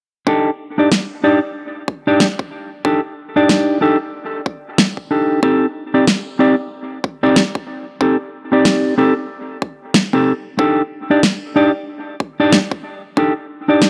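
Glitch hop at 93 BPM with a 16th-note swing, this playful, swaggering excerpt sets dark, clean electric guitar stabs, pumping with sidechain and softened by a low-pass filter and dub echo, over a punchy, high-passed electronic kick and a fat, up-front electronic snare in small room ambience, moving through Ebmaj7#11/D, Cm69 and Ebmaj7/D under light reverb.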